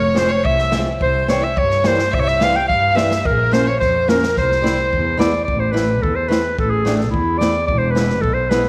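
Festive yet soulful, this short klezmer excerpt moves at 108 BPM in a straight 2/4, beginning in C phrygian dominant before shifting to A harmonic minor at 5.5 s. A clear, smooth-topped clarinet carries the melody up front in a classical solo style, touched by slapback echo, while a single bowed violin adds a woody, sul tasto second line with vibrato and the same slapback echo until it drops out at 5.2 s. Underneath, a bowed double bass sings with vibrato and expressive portamento, and an acoustic flamenco guitar fingerpicks a shadowy accompaniment. An open jazz kit of boomy kick and medium-tuned snare sounds natural in its studio room. The chords move from Fm through C, Bbm and E7 before settling on Am and E, all bathed in a moderate echo-chamber reverb.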